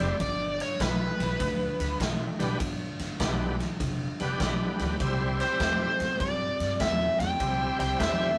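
A swung shuffle in 4/4 rolls along at 100 BPM, the big-band drum kit sitting up front with a punchy kick, a medium-tuned snare and ride cymbal in a natural, roomy sound. This is a swaggering, laid-back electric blues fragment in G major, moving from G to C at 5.0 seconds across its roughly 8 seconds. An overdriven lead guitar carries the melody up front with a smooth, picked tone, while a bright tonewheel organ provides accompaniment with a shouting, clean voice, key click, chorus vibrato and a slow rotary speaker. In the background, a second electric guitar through a small old amp plays a slightly broken-up, compressed riff, and a woody, thumpy upright bass with steel strings anchors the low end pizzicato. Moderate studio reverb gives the rough rehearsal-room recording a loose, lived-in feel.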